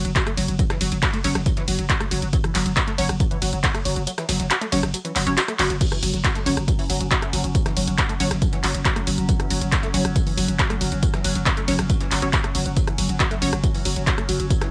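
A dry, punchy electronic kick sits up front in this industrial, intense cut from a longer peak-time techno piece, dropping out from 4.1 to 5.8 seconds before a drum fill and band accent at 5.6 seconds bring the drop back in. Around it, a punchy analog drum machine of handclaps, hats, ride, rim clicks and crashes drives alongside a very quiet, gritty sampler-style soul kit with snare and tambourine, while a growling, buzzy 808-style bass pumps under sidechain and a low-pass filter. A tight, detuned sawtooth sequenced riff with chorus, phaser, overdrive and analog delay plays alongside muted, resonant dub chord stabs, and from 6.2 seconds a sustained drone with moving overtones hangs in the background, all coloured by light reverb and a home-cassette grain.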